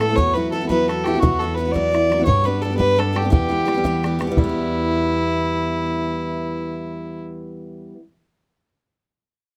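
Dark, lively and driving, this short cut from a Celtic jig moves in 6/8 at 115 BPM in E minor. A dark, nasal, reedy fiddle carries the melody up front, over a bright, full-bodied picked steel-string acoustic guitar and a woody pizzicato upright bass, while a boomy, close and dry bodhran plays until 4.5 seconds. Light reverb surrounds the parts as the chords move from Esus2 through G to Em, and the fiddle stops at 7.2 seconds.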